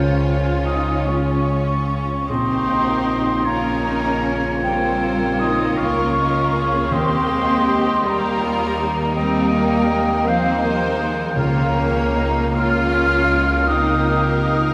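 Hopeful and uplifting, this slow, rubato cinematic film score for orchestra sets a rich, intimately close violin section on the melody over a felt-muted upright piano, a distant viola section, mellow French horns, a dark clarinet, a second violin line and a smooth cello and double bass foundation, with an airy, hollow flute group entering at 0.7 seconds and a clear oboe at 2.3 seconds, all bathed in a cathedral reverb.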